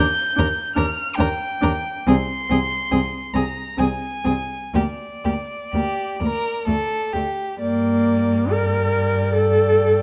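Classical chamber music for string quartet, this slow, elegiac movement unfolds in a rubato triple metre, with all four muted, bowed players sounding dark and veiled across a passage cut from a longer piece. The first violin carries the solemn melody high with a soft attack and vibrato above the second violin's inner line, while the viola's accompaniment, the most prominent voice, glides with portamento and a smooth top, and a close, up-front cello anchors the bass. Detailed microphones place the quartet in a moderate recital hall reverb, and a new section begins at 7.6 s.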